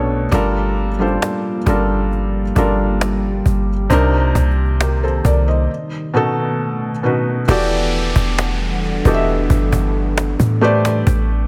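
The recording sits in a light, small-room reverb that gives this moody, late-night contemporary R&B fragment a sense of space at a slow 67 BPM in straight 4/4. Up front, a felt-muted upright piano carries the accompaniment, soft and mellow, with audible action noise and a short sustain. Beside it, a clean 808-style bass is deep and boomy, with a fast attack that decays darkly. From 0.3 s an ambient pad holds sustained chords with a warbling, vintage, detuned sawtooth character, a slow attack and a long release, coloured by chorus and its own reverb, while a snappy, dry cajon with snares plays the drum part from close up. The harmony moves through Gm9, Cm9 and B7, with a break at 5.7 s, then settles into E minor at 7.5 s on Em11 and Am11 as an electronic downlifter joins to carry the passage out.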